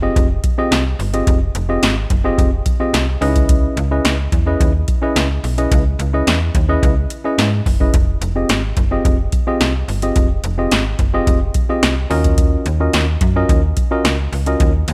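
A dry, close recording with little reverb places a tine electric piano, a slap-like FM bass and an electro analog drum machine all up front. This is a short cut of early-eighties boogie funk at 108 BPM in a straight 4/4, with a funky, late-night mood and tuning set to A4 = 438 Hz. The drum machine comes in at 0.2 seconds with a deep kick, a punchy snare and metallic hi-hats, its analog sound dry and electronic. The FM bass plays from the start in a low register, its snappy, digital attack fast and then decaying. The electric piano supplies chords through a combo amp, its clean tone worn and slightly out of tune, moving from Fm9 to Dbm9, back to Fm9 and then to Ebm9 before it stops at 14.7 seconds.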